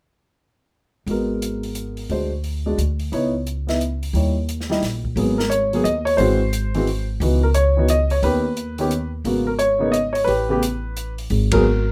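A brisk 3/4 swing at 176 BPM, with a lilting swung eighth-note feel, drives this smoky, late-night jazz piano trio excerpt in G# minor, cut from a longer piece and tuned slightly low at A4 = 439 Hz. The warm baby grand piano carries the melody, sitting up front with a natural tone. Beneath it, the pizzicato upright bass is woody and thumpy, with the warm character of gut strings, while the open acoustic drum kit sits further back, airy and polished, with hi-hat, dark ride cymbal, a medium-tuned snare and a boomy kick. All three enter together at 1.1 s, moving through a G#m9, D(#11), C#m9 and D#(b9) progression before the harmony shifts at 5.2 s toward altered colours such as G#aug7 and D#aug7, ending on A7sus2 and G#7sus2. The band hits a shared accent at 11.5 s, and a moderate small-room reverb gives the trio an intimate space.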